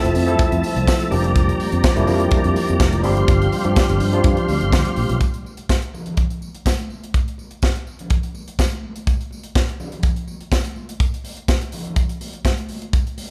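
A danceable, celebratory disco groove at 124 BPM opens with a tight, polished funk kit, its high-tuned snare and tight kick up front. Beside it sit a worn, slightly out-of-tune electric piano with light overdrive, a full organ swirling through chorus vibrato and a slow rotary speaker, and a punchy fingered bass, all moving through Fmaj7, Bb6/F and G7sus4. At 5.2 seconds the keys and bass drop out, leaving the drums, distant ringing congas and a faint, jingly tambourine to carry the beat in a large, live-sounding studio room until 13.3 seconds.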